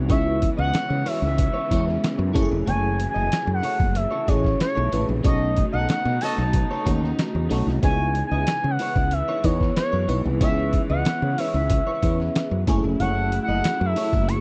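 This polished 1980s jazz-funk pop excerpt opens on a dreamy FM electric piano with a soft pad layer, treated with phaser and analog chorus, over bowed studio strings held in the background and a woody, round fretless bass, all moving through chords in C# minor at a straight 93 BPM with an urban, nocturnal mood. A muffled, pitched-down sampler-style drum kit with a thumpy kick sits up front beside a smooth, sawtooth portamento lead with vibrato, while a slightly broken-up electric guitar picks a chorused riff. A band accent from 5.2 to 7.8 seconds brings a brief, clear horn figure with tape echo at 6.2 seconds, and the whole mix stays dry and close, in a 1970s-style studio sound.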